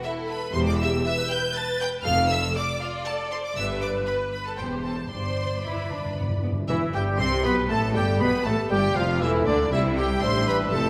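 Bathed in the spacious reverb of a scoring stage, this spirited excerpt from a quick classical-period movement in C major at 119 BPM in 3/4 opens with rich, bowed strings: the violins carry a focused melody over a more distant second violin line, with smooth violas beneath and close cellos and lush double basses entering at 0.5 s, until a round timpani fill on calf heads at 5.1 s leads into a lively new section at 6.7 s, where bright flutes, a clear oboe, a very quiet warm clarinet and a roomy bassoon join, and mellow French horns add sustained chords from 7.2 s.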